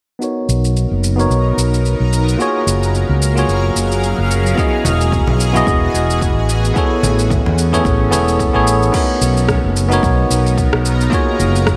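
Relaxed and unhurried, this swung sunset chillout excerpt rides on a bell-like tine electric piano, up front and clean, treated with digital delay and a filter sweep across its first 8.9 seconds, over a round, dark fretless electric bass and a shimmering, ethereal pad of detuned, chorused and phased sustained chords. A deep house drum kit of crash cymbal, rim click and shaker carries overdriven grit from the start, joined at 4.6 seconds by a deep, layered electronic kick, while very quiet, vintage-toned congas with hard hands flicker in between 4.8 and 8.2 seconds. Moderate plate reverb and a bright 1980s-style digital production give the whole a glossy sheen as the lush major-ninth chords cycle by.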